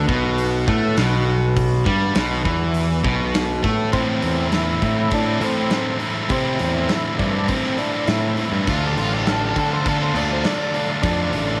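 A round, punchy fuzz bass anchors this driving, gritty classic rock fragment at 101 BPM, sitting up front beside a sludgy distorted guitar riff and a bright, hollow-bodied overdriven semi-hollow guitar over a big, dark-toned acoustic drum kit with a punchy kick, while a clear tonewheel organ with key click and slow rotary speaker holds background chords until a thick, percussive overdriven organ melody with chorus vibrato and slapback echo takes over at 3.9 seconds, a biting overdriven guitar adds a second line from 8.7 seconds, and a moderate spring reverb in a small room ambience frames the whole.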